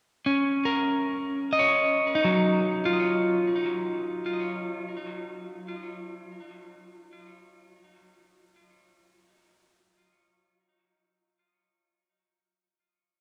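Warm and peaceful, this free-time ambient excerpt features a lone electric guitar, picked and slightly broken-up with spring reverb and delay, sitting up front from 0.3 to 7.0 seconds over a Dbsus4 to Ebm9/Gb progression before the chords fall away at 8.3 seconds, all bathed in a vast, echoing cathedral reverb with the soft haze of cassette tape.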